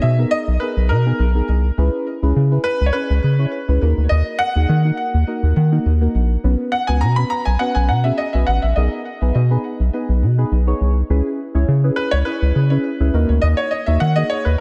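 A round, up-front analog bass with a square-wave edge and a moving filter sweep anchors this euphoric, upbeat dance-pop passage at 103 BPM, while deep, soft chord stabs with chorus and phaser outline G#madd9/B, C#m7, D#m and Bsus2. Above them, a clear, worn concert grand carries the melody with audible action noise, subtle chorus and delay, all in light studio reverb in a section cut from a longer piece.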